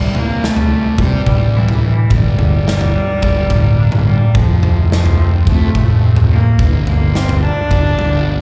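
A big, punchy rock drum kit sits up front in this dark, brooding piece of quiet-loud alternative rock, its kick, medium-tuned snare and toms ringing in a large room from 0.1 to 8.1 seconds. Beside it, a fuzz-laden picked electric bass growls with a round, overdriven tone, running from F1 to C3 and staying just as forward. Over them, a single bowed cello carries the melody between E3 and D4, its period-style, gut-string sound nasal and reedy with an airy bow and a touch of slapback echo. Tucked behind, a clean, twangy electric guitar picks out fingered arpeggios, softened by ensemble chorus and its own slapback echo. The 4/4 groove moves at 107 BPM in G dorian over C6, Gm, F and Gm, and the whole performance comes across like a live gig heard through the venue's PA, wrapped in recital-hall reverb, in this brief fragment cut from a longer piece.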